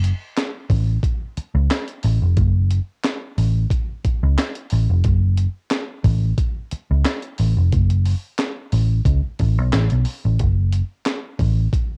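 A muted, picked electric bass and a gritty, sampler-style breakbeat kit start together, setting up a sly, funky groove at 90 BPM in F# minor. The bass sits up front, dark, round and punchy, while the compressed drums carry a thumpy kick, a high-tuned snare, hi-hat and handclaps with a cassette-tape grit. A digital ambience frames this home-recorded fragment of a longer piece, which runs to about 12 seconds.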